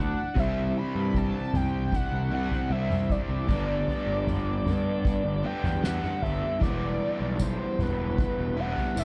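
This short excerpt of dark, hypnotic psychedelic rock opens with a nasal, shimmering pulse-width lead carrying the melody, thickened by chorus and a slapback echo, over a steady straight 4/4 feel. Beneath it, a bright, double-tracked overdriven guitar plays a compressed riff pushed up front with harmonic tremolo, while a round, fuzzy picked bass anchors the low end. A piping tonewheel organ holds sustained chords in the background, lightly overdriven with audible key click and a slow rotary speaker. At 0.4 seconds a soft-mallet drum kit enters with a fat snare, boomy kick and toms, as the harmony moves through Cadd9, Gadd9 and Em7. A jingly, saturated tambourine joins at 7.4 seconds, and the whole piece has a dry, close 1970s-style studio sound.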